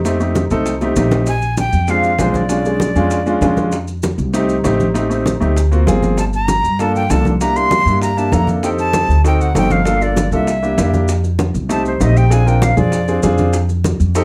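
A breathy jazz flute with a crisp chiff carries the melody at 1.3 seconds and again from 6.2 to 13.2 seconds over a sunny, danceable Afro-Cuban jazz groove at 196 BPM in F mixolydian, where a woody, thumpy pizzicato upright bass and a clear, intimate grand piano with audible action noise sit up front, ringing congas play in the background, round, low-tuned, saturated bongos stay very quiet, and grainy maracas add texture, all within a small, reverberant room heard from further back.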